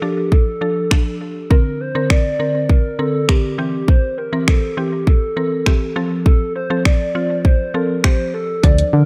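A straight house groove drives this energetic, bittersweet dance-pop fragment, with a layered electronic kit of punchy kick, bright hi-hats and finger snaps sitting up front from 0.3 seconds. From the first moment, a mallet-like FM synth pluck supplies woody, percussive accompaniment in its mid register, treated with chorus and analog delay. Above it, a hollow, clarinet-like lead built from square and triangle waves, detuned with a noise layer, carries the melody in a soft, sustained voice with vibrato, also colored by chorus and analog delay. The harmony moves from Dm through Bbadd9/D and C to F, and only at 8.6 seconds does a round, dark FM bass arrive, pumping against the sidechain just before the clip cuts off. Light reverb and digital ambience give the mix an echo-heavy sheen.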